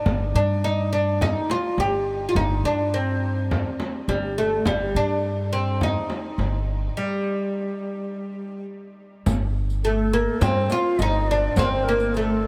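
A bright, plectrum-plucked fretless oud carries the melancholic, longing melody up front in this Turkish makam ensemble piece, over a growly pizzicato upright bass and a deep, distant frame drum, and after a break from 7.0 to 9.3 seconds a riq's jingles join in the background at 9.3 seconds and a breathy, vibrato-laden ney enters at 9.8 seconds, set in light reverb in a fragment cut from a longer piece.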